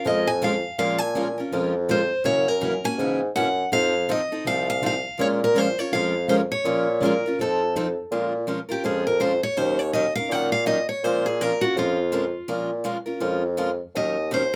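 Swung eighths drive this fiery, virtuosic excerpt of acoustic string swing in Bb minor at 164 BPM: an up-front, bright steel-string guitar with fresh strings and audible finger squeak carries the picked melody and takes a solo from 8.1 s, a boxy parlour-style picked guitar accompanies beneath it, a plugged-in guitar sits in the background until 7.9 s, and a present, classical-style bassoon with light vibrato plays the bass line, all in light reverb.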